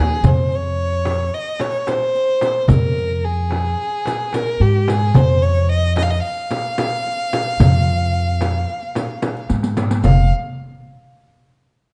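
Turkish makam ensemble music in F makam ussak, this soulful, melancholic passage is cut from a longer piece and moves briskly at 220 BPM in eighths over a straight 9/8. A single bowed violin carries the melody up front with a rich, focused tone, vibrato and a smooth top, while a woody, growly pizzicato upright bass on steel strings sits equally forward. A soft-handed clay-shell darbuka sounds from a distant large room beside a small, bright frame drum and a riq whose close jingles stay in the background, all under light reverb and a dark production, with a drum fill at 9.5 s leading into a new section at 10.0 s.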